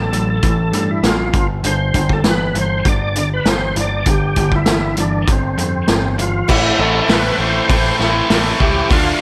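Classic rock at 99 BPM in A minor, swaggering and driving, led by a thick, overdriven tonewheel organ melody through a slow rotary speaker with chorus vibrato, over two bright, picked distorted electric guitar riffs set in the background and a growling, overdriven picked electric bass. An up-front vintage drum kit with dark cymbals, a punchy kick and a saturated, rolled-off top drives the groove with crash, hi-hat and snare. At 6.5 seconds the harmony shifts from Gsus4 to A minor and a boxy, fresh-stringed swing-style acoustic guitar joins in the background, all within light studio reverb in this short cut from a longer piece.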